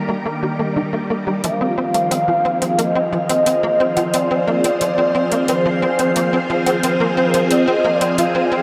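A steady, straight 4/4 pulse drives this hypnotic, cosmic piece of ambient, sequencer-driven space music, cut from a longer work. A tight, punchy sequencer bass plays a driving riff from 0.1 seconds, its nasal sawtooth and square-wave tone plucked and decaying under a filter sweep, with ensemble chorus, delay and shimmer reverb. Alongside it, a swirling, vintage string machine holds bright, up-front sustained chords through phaser and chorus, while a breathy, wind-like noise texture sits mellow in the background. At 1.4 seconds the harmony moves from Eb to Fm7, and an expressive, smooth synth lead enters with a dark sawtooth melody, vibrato, chorus and delay. Electronic hi-hat and woodblock arrive at the same moment, their metallic, tape-tinged ticks sitting in a huge, echoing reverb space.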